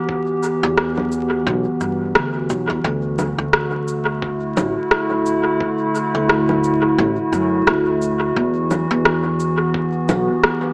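This ambient dub excerpt moves at 87 BPM in 4/4 with a 16th-note swing, settling into a spacious, meditative mood in E minor. A warbling, nostalgic pad opens at the very start, holding dark, lo-fi sustained chords with a slow attack, long release, chorus and its own reverb, moving from Emadd9 to Dadd9 at 2.8 seconds and back to Emadd9 at 8.4 seconds. A sampler-style electronic kick sits low and muffled, giving a compressed, pitched-down thump with a tape-softened, small-room character. Overdriven electronic cabasa, rim click and congas come up front, thrown into dub echo. A woody pizzicato upright bass with steel strings also sits forward in the low register. The whole recording carries an echo-heavy mix in a moderate digital echo chamber, with vinyl crackle and a small-speaker sound.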